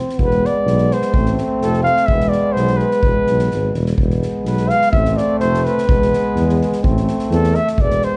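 A clear euphonium with a light vibrato opens this fiery, virtuosic excerpt of Balkan brass band folk at 126 BPM in 2/4, joined almost at once by an acoustic soft-mallet drum kit with a boomy kick and fat snare in a big room, a vibrato-tinged trombone and a smooth-topped tuba bass, while an up-front, mellow flugelhorn carries the solo melody in E phrygian dominant over alternating E and Am chords, tuned to A4 = 437 Hz under light reverb.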